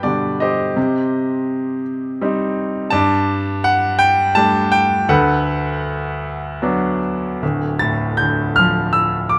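In a rubato 3/4 that drifts between 73 and 86 BPM, this reflective, melancholic classical piece, cut from a longer work, features a bright, up-front grand piano alone, spanning D1 to A6 in G major and moving through G, Cm, Gsus2 and D6 before shifting to Dm at 7.4 seconds, with a light reverb around its natural tone.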